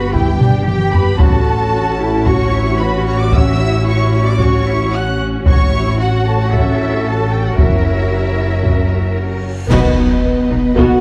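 A dark, reverberant scoring-stage sound frames this majestic, heroic cinematic orchestral cue, cut from a longer piece, where lush bowed violins carry a focused, vibrato-laden melody over a background second violin line, smooth viola accompaniment, and even-toned cellos with up-front double basses anchoring the low end. Mellow, distant French horns hold sustained chords while a taiko ensemble, struck with hard sticks in a large room, opens with a drum fill, and bright, close cymbals with concert bass drum join at 5.5 seconds. Near the end a huge, very quiet reverse cymbal leads into a band accent and impact at 9.7 seconds, where a clear, tight trombone section adds quiet sustained chords.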